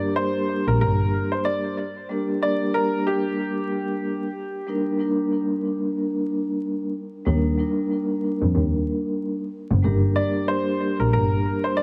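Vinyl crackle and an echo-heavy small-room mix frame this gritty, dark boom-bap hip-hop excerpt, where a bright, slightly detuned upright piano with audible action noise carries the melody through tape echo, a mellow vibraphone with soft mallets and fast motor vibrato rings out the accompaniment throughout, and a pure, floating bowed double bass sounds briefly near the start before returning at 7.3 seconds.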